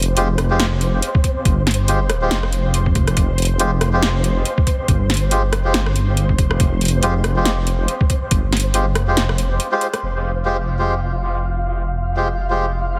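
A dark, detuned saw bass sits up front in this brooding, meditative deep dubstep excerpt, its deep, rumbling tone beating and saturated as it holds low around F1 to G1 at 140 BPM in a swung, half-time 4/4 feel in F minor. Above it, a reedy, breathy melodica plays stabs with a nasal, vintage, band-limited character, carried by dub echo over an Fmadd9 chord. A grainy, flickering texture with a slow attack and long release hovers quietly in the higher register, its granular shimmer softened by built-in reverb. The electronic drum kit brings a punchy snare, a rim click and metallic, overdriven hi-hats, with low-pass filtering on hats and snare, while a sampler-style, pitched-down, muffled kick thumps in at 1.1 seconds. After a short break at 9.6 seconds the kit drops out at 10.0 seconds, leaving bass, melodica and texture in a closing passage, all wrapped in a heavily compressed, radio-like sound with light reverb.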